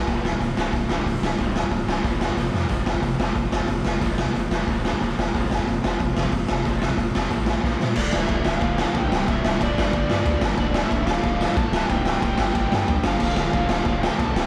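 Upbeat, energetic punk rock at 183 BPM in 4/4, this fragment from a longer piece sets three very quiet picked riffing guitars (a bright cranked stack, a compressed distorted guitar and a dark, double-tracked fuzz guitar) over a deep, punchy sine sub bass and an up-front, lo-fi garage drum kit with a gritty, muffled sound in a bright stone room, with drum fills at 2.5 seconds and from 7.6 to 8.0 seconds before a smooth overdriven lead guitar with slapback echo takes up the melody at 8.0 seconds over a Dm, C and G progression.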